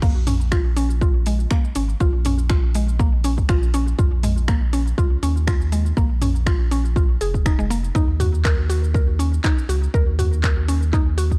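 A dry, gritty sound with a cassette-tape grain carries this hypnotic, spiritual afro house drop, cut from a longer piece, where a punchy, layered electronic kick sits up front with a touch of studio reverb and a house kit adds hi-hat, shaker, handclaps, finger snaps, toms and crash cymbal. A deep, round sine sub bass pumps under sidechain, while a woody, mallet-like FM pluck with a noise layer spins arpeggios of short-decay notes through chorus, analog delay and sidechain pumping. The harmony holds on B-flat minor before moving to E-flat minor seventh at 8.0 seconds.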